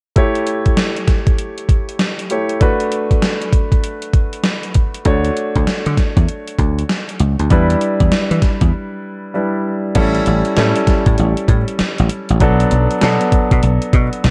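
A gated 80s drum machine drives this slick, bouncy new jack swing excerpt at 98 BPM, with a thumpy kick, a gated reverb snare, hi-hat and crash carrying gritty 12-bit sampler texture and a tape-tinged small-room character. A clear concert grand piano with audible action noise and long sustain plays the A7, Bm7, Dmaj7 and Em7 changes over swung sixteenths, and a dry, punchy thumbed slap bass enters at 5.1 s. A break at 8.7 s leads into a new section at 10.0 s, all set in light reverb.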